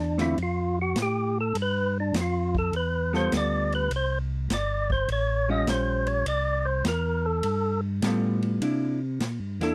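A fat, lightly overdriven tonewheel organ with percussive third-harmonic attack carries the melody as a solo, its slow rotary speaker and vibrato giving the lead a soulful, bluesy voice up front in this soul jazz organ trio fragment. Beneath it, a second tonewheel organ plays the bass line with a mellow, round, dark tone, clean apart from its chorus vibrato and its own slow rotary speaker. At 0.2 seconds a vintage hollow-body electric guitar enters with dark, clean, picked accompaniment, joined at the same moment by a vintage acoustic drum kit of hi-hat, ride, medium-tuned snare and punchy kick, which sits a little lower in the balance with a natural small-room character and a rolled-off top. The groove moves in 4/4 with a swing on the eighth notes, over changes that run from Dm through G9 and an Aaug7 before landing on C9 at 8.6 seconds as the section begins again. The sound is dry and close, with little reverb, in the manner of a 1970s studio recording.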